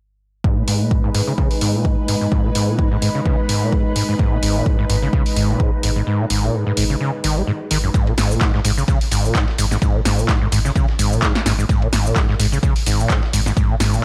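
This gritty, driving acid house excerpt opens at 0.4 seconds with a lush vintage string machine holding sustained minor chords, pumping under sidechain and blurred by ensemble chorus. Alongside it, a squelchy, resonant overdriven acid bass riff sits up front, its distorted sawtooth tone shaped by a filter sweep. The drums start with a punchy, tape-warm electronic kick, joined by an overdriven analog drum machine supplying handclaps, hi-hat, shaker and snare with a lightly swung shuffle. At 4.4 seconds a deep, thick saturated sub bass settles underneath, and the kick drops out briefly before returning as the strings stop at 7.9 seconds and the harmony shifts to a bare power chord. From there a dusty sampler-style kit adds a ride cymbal and a medium-tuned snare far in the background, high-passed and pumping on the cymbals, all within a dry hardware sound carrying transformer saturation and a faint mains hum.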